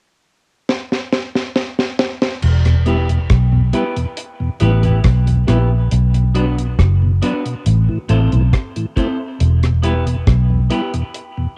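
A dry, dark reggae drum kit opens with a fill at 0.7 seconds, its high-tuned snare, tight kick, rim click, hi-hat and crash sitting up front with cassette tape colour, before a round, foam-muted fingered electric bass enters at 2.4 seconds, low and prominent, as the roots reggae groove settles into E minor at a laid-back 69 BPM. A mellow tonewheel organ with key click and a slow rotary speaker follows, then a bright, twangy clean electric guitar arrives at 2.9 seconds, bathed in spring reverb and tape echo. The serious, unhurried progression moves from Em to Bm, Am and back to Em, with the organ and guitar carrying the same cassette tape character as the drums in this homespun recording cut from a longer piece.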